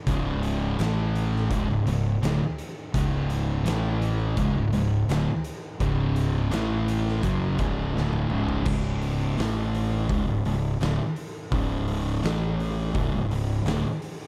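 A straight 4/4 pulse at 84 BPM drives this sludgy, hypnotic stoner and doom metal fragment in C# phrygian, where an up-front thick fuzz guitar riff is joined by a second distorted guitar riff set in the background until 8.7 s, a growly, punchy fingered bass adds overdriven fuzz underneath, and an oversized low-tuned acoustic drum kit with a boomy kick, fat snare and dark cymbals pumps in a bright stone room, playing a fill from 8.0 to 8.7 s that leads into the next section as the chords move between C#5 and A5 in a dark, lightly reverberant production.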